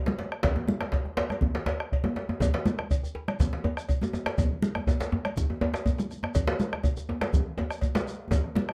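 A dark studio sound with moderate room ambience frames this short cut from a longer West African drum ensemble performance, driving and festive in a straight 4/4 feel. The bombo sits up front, deep and close, anchoring the ensemble. A pair of djembes share the hand drumming, one full-bodied and up front in a live room, the other tight and cracking in the background. Bright, thin-skinned, damped congas sound from a live room, and a metallic cowbell joins at 0.4 seconds. A grainy, mellow shekere enters at 2.4 seconds, dry and near, and the passage closes with a drum fill at 8.3 seconds.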